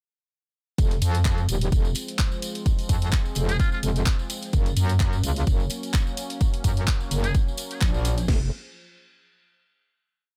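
Gritty, swaggering bass house at 128 BPM in F phrygian, where a punchy kick, cracking snare and crash lead a tape-toned electronic house kit with handclaps, hi-hat and ride, a saturated metallic wobble bass with chorus and sidechain pumping drives a drop from 0.8 s, a detuned sawtooth pad glows faintly in the background, a jingly tambourine sits at the back, and a buzzy, raspy metal-muted trumpet with digital delay cuts in for two brief answering phrases before the piece settles on a final F minor chord at 8.3 s.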